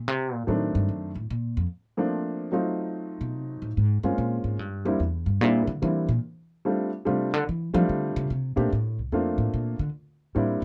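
Playful and warm, this swinging jazz piano trio passage in 3/4 moves at 146 BPM in F major, with a woody, growly pizzicato upright bass taking a solo from the very start, up front on steel strings. A baby grand piano joins at 0.5 seconds with an intimate, natural tone, short sustain and audible action noise, while the harmony passes through colourful chords such as D7b9, Bbm9 and F69 before moving on to Bbmaj9 and C9. The sound is dry and close, like a 1970s studio recording, and the passage is cut from a longer piece.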